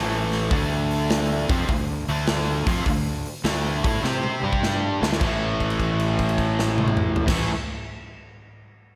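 Smoky and heavy, this swung blues rock and southern rock power-trio excerpt at 102 BPM in A minor sets a cranked, double-tracked overdriven guitar riff with slapback echo over growly fuzz bass and a big, punchy acoustic kit with bright cymbals that enters at 0.3 seconds and fills from 4.0 seconds into a held note at 5.2 seconds, all in a big arena sound with recital hall reverb.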